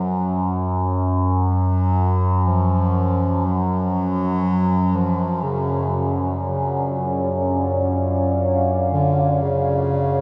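Floating in free time, this unsettling, dark ambient drone opens on a resonant F#2 drone, up front, whose moving overtones sweep through its sawtooth-and-sine body under a shimmer of chorus. A mellow solo bass clarinet carries the melody in a smooth, classical style between C#3 and F#3, fading in gradually as its delayed notes trail behind it. The harmony begins unanchored and settles onto D minor at 3.5 seconds, and at 4.9 seconds a deep, moody pad enters with detuned unison sawtooth tones, a sub octave and chorus, holding full-bodied sustained chords high above. Everything hangs in a vast, echoing space, with a huge wet reverb whose tail stretches to 7.6 seconds, and the tuning sits slightly low at A4 = 438 Hz. The music fades out from 8.7 seconds, as it is cut from a longer piece.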